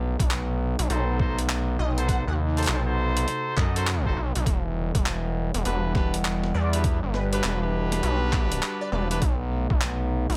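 Glitch hop with a swaggering, gritty attitude and a swung 16th-note feel, this short cut from a longer piece moves between B7b9 and Em9 chords. An up-front, aggressive synth bass, sawtooth and sync-laced with ring modulation and a fast filter pluck, is distorted into a snarling low end, and an overdriven, thumpy electronic kick, matching it in level, sits alongside it. A boom bap sampler-style kit, pitched down and re-recorded in a large room, adds handclaps, hi-hat and a high-tuned snare with overdriven crunch. Sustained chords from a dark, warbling, nostalgic pad sit in the background, carrying lo-fi 12-bit sampler grit, chorus, built-in reverb and sidechain pumping. A clear pop-style horn section enters at 0.9 seconds with vibrato-tinged stabs treated with a low-pass filter, digital delay and pumping. A catchy, detuned unison lead with a moving notch and a mellow edge appears briefly at 1.8 seconds and returns at 6.5 seconds, dressed in ensemble chorus and delay, in an otherwise dry overall sound.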